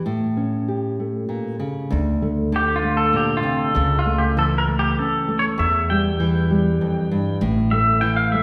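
A thumb-plucked, classical nylon-string guitar opens this wistful, melancholic acoustic folk piece in D minor at 98 BPM in a straight 3/4, joined at 1.9 seconds by a woody, growly pizzicato upright bass, before a clean, compressed pedal steel guitar, played with fingerpicks and slide and shaped by volume swells, enters up front at 2.6 seconds to carry the solo line through the rest of this fragment of a longer piece, all set in the wet reverb of a recital hall.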